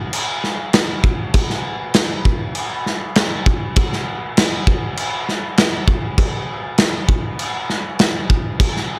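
A loose indie drum kit opens the recording almost immediately, entering at 0.1 seconds and carrying this short rock fragment on its own until 8.8 seconds. Set in a straight 4/4 feel, the acoustic kit sounds anthemic and cathartic, with a punchy kick, a medium-tuned snare and dark crash cymbals. The studio room has a pumping quality, and the drums sit up front in the mix. A rolled-off top end gives the kit a warm character, while light reverb adds a touch of space. Cut from a longer piece, the passage stays within a single section throughout.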